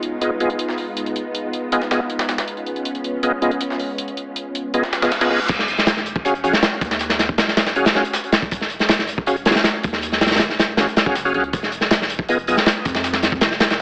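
A silky string machine opens this raw, nostalgic drum and bass and jungle passage at 159 BPM in Eb minor, holding soft, vintage chords with an ensemble chorus and a touch of 12-bit sampler grit over a Fm7b5 harmony. Beneath it, a compressed, pitched-up sampler-style breakbeat plays filtered hi-hat and snare with a tape-toned edge, while an overdriven tonewheel organ enters at 0.2 seconds with thick stabs colored by chorus vibrato, a slow rotary speaker, a low-pass filter and dub echo. A reverse cymbal sounds in the background just before the drop at 5.5 seconds. There the strings stop, and a crunchy, up-front acoustic breakbeat kit joins the sampler-style break with tight kick, medium-tuned snare, dark cymbals and crash, along with a deep, tube-saturated triangle sub bass sitting low in the mix under an Ebm11 chord. The harmony returns to Fm7b5 at 11.5 seconds, and the whole passage carries a lush hall reverb, a hint of small-room ambience and a lo-fi AM radio character.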